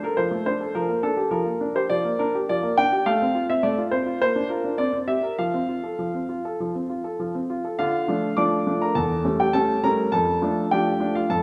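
Cheerful and elegant, this short cut from a longer classical-period piano sonatina moves at 103 BPM in a straight 4/4, tuned to A4 = 438 Hz. A clear grand piano plays solo throughout, spanning E2 to D6 with a present, up-front tone and long sustain. The opening part sits in F major, passing from Dm/F and Gm/F through F/A, Bb and C7 before settling on F. At 7.8 s the music turns to D minor, moving from Dm to A7/E and back to Dm/F by 10.1 s. A wet recital hall reverb with a 1.8-second decay surrounds the instrument, giving the room a spacious ring.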